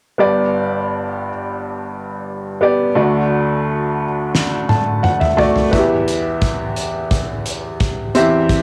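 A bright, woody upright piano opens this anthemic, piano-driven pop excerpt in G major at 87 BPM, moving from G to D and on to Em, before a loose indie drum kit with a fat snare, punchy kick, hi-hat and toms enters at 4.3 s with a fill alongside a piano fill, the drums carrying a cassette-tape color, all set in a snug booth ambience with a homemade cassette character.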